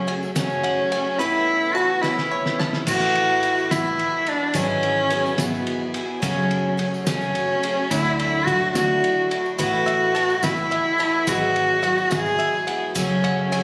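Indie folk in 6/8 at 71 BPM with an uplifting, nostalgic mood, this short excerpt in A major features an up-front bowed cello singing an expressive melody with vibrato and portamento over a shimmering, octave-doubled twelve-string guitar, a very quiet dark brass section holding chords, a round foam-muted electric bass, a muffled, gritty drum kit with a fat snare and a drum fill from 2.0 to 2.9 seconds, a jingly tambourine in the background, and a twangy fingerpicked banjo playing arpeggios that drops out at 2.9 seconds and returns at 9.6 seconds, all set in light small-room ambience captured on a phone.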